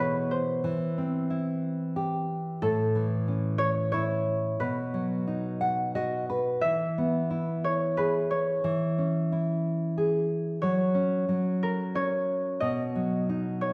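A mellow, ringing concert harp carries the innocent, tender melody of this short children's lullaby excerpt in a rubato 3/4 at 90 BPM, while an up-front, thumb-plucked classical nylon-string guitar accompanies through chords moving from E to A, B, C#m/E and F#5, adding a brief fill at 5.3 seconds, all within the lingering bloom of a recital hall.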